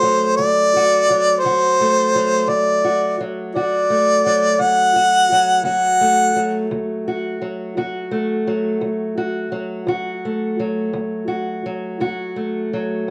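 Soulful and swaggering, this acoustic country blues fragment in 12/8 opens with a clear, close-miked harmonica singing a jazz-inflected solo melody with light vibrato and scooped notes until 6.7 seconds, while a dark, boxy parlour steel-string guitar, fingerpicked and carrying a cassette-tape character, holds a D chord accompaniment up front through 13.1 seconds, the whole home cassette recording set in a small room with light reverb.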